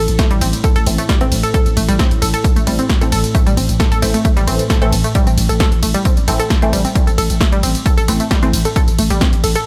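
An overdriven, punchy electronic kick drives this dark peak-time techno excerpt alongside a growling, buzzy 808-style bass under a low-pass filter and an analog drum machine of hi-hat, ride cymbal, snare and tambourine with its own overdrive. A round, detuned analog pluck riff colored by chorus, tube saturation and tape echo pumps with sidechain compression, while a muted, deep dub chord stab treated with phaser and dub echo enters at 0.9 seconds. Beneath them, a mellow, warbling analog drone sits in the background in a digital ambience.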